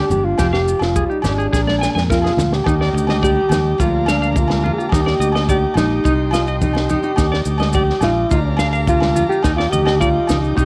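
A breathy, whispered alto saxophone carries the melody from the start, over a picked acoustic guitar in the background and twangy, clean electric guitar arpeggios, with a round, up-front fingered bass, close, dry congas, grainy maracas and ringing agogo bells joining almost at once in this danceable, bittersweet highlife guitar-band excerpt at 106 BPM. A compact cocktail drum kit with a punchy kick and high-tuned snare plays a fill from 1.5 to 2.7 seconds. At 2.7 seconds a buzzy, overdriven combo organ with heavy vibrato slips in behind with sustained chords as the harmony settles around Ebmaj7, and the guitars, drums and organ carry the grain of a cassette home recording in a light studio reverb.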